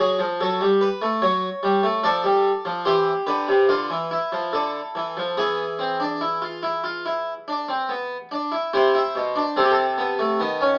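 A solo harpsichord, airy and brilliant with a full, plucked French-style tone from three sets of strings, sits up front in this joyful, lively baroque-style three-part fugue, cut from a longer piece and heard through light reverb and an AM radio sound, shifting to a new section at 8.7 seconds on an A minor chord.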